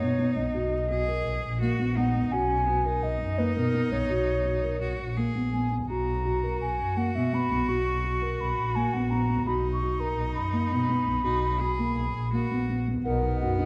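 Hopeful and playful, this excerpt from a contemporary chamber piece moves briskly at 168 BPM in an uneven 5/4 with a straight feel, settled in B major around a Bmaj7 chord. A wooden baroque flute carries the melody with a pure, expressive tone, tongued notes and vibrato, rising as high as C#6. Beneath it, a bright cello plays a second line, its bowed sound biting and intense with vibrato of its own. A felt-muted upright piano supplies arpeggios that are soft and boxy, with thick felt and audible action noise lending an intimate, close-up character. A single bowed double bass holds the bass up front, focused and rich, while a reedy, breathing pedal harmonium slips in with sustained chords only at 13.1 seconds, just before the cut at 13.7 seconds. The whole sits on a moderate scoring stage reverb with a dark production.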